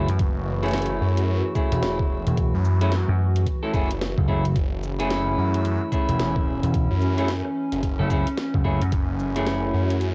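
With light reverb and the softened character of a home cassette recording, this swaggering, funky glitch hop excerpt moves at 110 BPM with a 16th-note swing in F# minor, where a gritty, pitched-down electronic kick and a cracking, layered drum kit of snare, hi-hat, rim click and shaker play alongside a punchy, amped slap bass that stops at 8.9 seconds and a thick, swirling phased saw bass, while clean hollow-body electric guitar stabs carry 12-bit sampler grit, analog delay and sidechain pumping over a warbling, nostalgic pad that sustains a mellow F#m9 chord with chorus and its own pumping.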